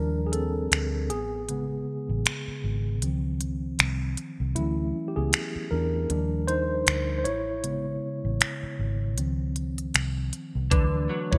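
Bright, 1980s-style digital production with a light reverb frames this dreamy, smooth contemporary R&B fragment, cut from a longer piece, with a gentle swung sixteenth-note feel. A mellow, clean tine electric piano, heard as if through its built-in speakers, sits up front and carries a solo across the whole passage, drifting through lush major-ninth chords from Ebmaj9 to Amaj9, C#maj9 and Dmaj9. Beneath it, a vintage muted fingered electric bass sounds dark, round and punchy, its foam-muted, amped tone also placed up front. A produced trap kit arrives at 0.3 seconds with finger snaps, crisp hi-hats and a knocking kick. At 10.7 seconds, a warm, direct-recorded clean electric guitar slips in with compressed, picked arpeggios colored by ensemble chorus and delay.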